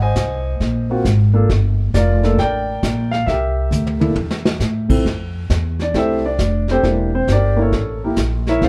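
A polished baby grand piano carries the melody in this swinging jazz piano trio fragment, its tone present and up front with long sustain and a touch of plate reverb. Beside it, an upright bass played pizzicato gives a woody, steel-strung foundation that sits close to the listener. A vintage kit played with brushes joins at 0.2 seconds, dark and smooth with a rolled-off top, dark cymbals and a punchy kick, and it takes a fill at 3.7 seconds. After the extended chords Ab9, Gm9 and C13, the piano moves into a solo at 5.0 seconds over Fmaj9, Em7b5 and A(b9). The trio is heard from further back in a moderate club room, giving the passage a warm, swinging feel as it is cut from a longer piece.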